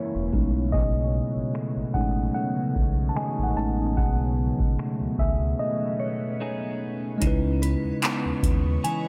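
A worn, slightly out-of-tune tine electric piano sits up front from the first moment, alongside an ethereal, detuned pad washed in ensemble chorus, phaser and sidechain pumping, and a clean electric guitar picking arpeggios through lush chorus and diffuse ambient delay, in this smooth, romantic contemporary R&B excerpt at 74 BPM with a light 16th-note swing. A deep sine sub bass with octave and a booming analog drum machine with a deep kick, metallic hats, finger snaps and handclaps arrive within the first second, while a crystalline FM bell glints in the background. A filter sweep runs through the opening 7.2 seconds, and a break at 5.6 seconds leads to a change at 7.2 seconds. The harmony moves from B13 to C#m9, under light reverb and a low-pass filter.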